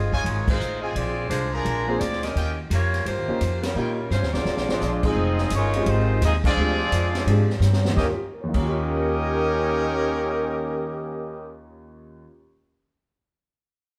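A woody, up-front pizzicato upright bass drives this swinging, brassy big band jazz passage at 171 BPM in Eb mixolydian, where a distant, roomy saxophone section carries the opening melody over brilliant trumpet stabs and a natural drum kit with a high-tuned snare and boomy kick; a polished grand piano enters at 1.9 seconds, a clear, loose trombone section adds a second line from 4.3 seconds, and from 4.7 seconds a present, tight trumpet section takes over the melody, with the band playing live in a moderate stone-room reverb.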